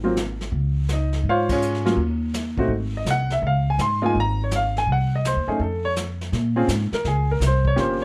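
A clear, intimate grand piano carries the melody over a woody, thumpy pizzicato upright bass from the first moment, and a brushed drum kit with a small-room sound, dark cymbals and a boomy kick joins at 0.2 seconds in this relaxed, swinging jazz piano trio. The whole band hits an accent at 1.4 seconds, and the piano's audible action noise sits up front beside the gut-string bass, all wrapped in light reverb. The harmony moves through chords like Ab9, Cdim and F before shifting into a new section on Bbm9 at 6.3 seconds in this short cut from a longer piece.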